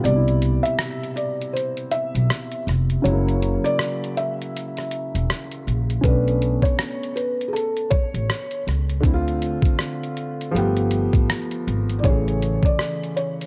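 A 16th-note swing at 80 BPM in 4/4 drives this mellow, dreamy lo-fi hip hop fragment, where a compressed, pitched-down sampler-style drum kit with a thumpy kick, hi-hat and rim click sits up front beside a woody pizzicato upright bass that drops out at 12.6 s, while a dark, vintage upright piano filtered through cassette tape comps under a soft, thick-felt muted upright piano carrying the melody with audible action noise, all moving through chords from Cmaj7 and F#7 to Bm9, Dm7, G9 and Amaj7 inside a studio reverb and a cassette-tape haze.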